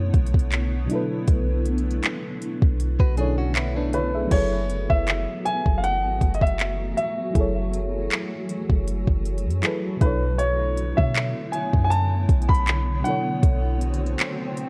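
A mellow FM electric piano with chorus and a cloudy, granular pad with sidechain pumping open this moody, longing contemporary R&B excerpt at 79 BPM in F# minor, joined at once by a deep, boomy 808-style bass and a produced drum kit of soft kick, hi-hat, handclaps and crash; a clean, direct-recorded electric guitar adds brief delayed arpeggios at 3.0 seconds, an intimate grand piano with audible action noise carries the delayed melody from 3.9 seconds, and a background electronic swell arrives at 13.9 seconds, the mix tinted by worn, warbling cassette tape and light reverb.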